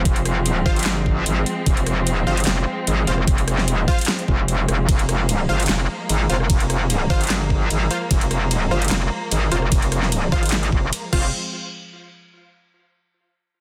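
Heavy wobble dubstep in a half-time feel, this aggressive excerpt from a longer piece is a drop driven by a bright, saturated wobble bass up front with chorus, a knocking overdriven electronic kick, and a dubstep kit of huge snare, metallic hats, handclaps, rim clicks, crash and ride in studio reverb, while punchy detuned supersaw stabs enter at 0.7 seconds with digital delay and a lush bowed string section sits in the background on sustained chords that pump under sidechain and a low-pass filter, inside a dense, heavily limited master.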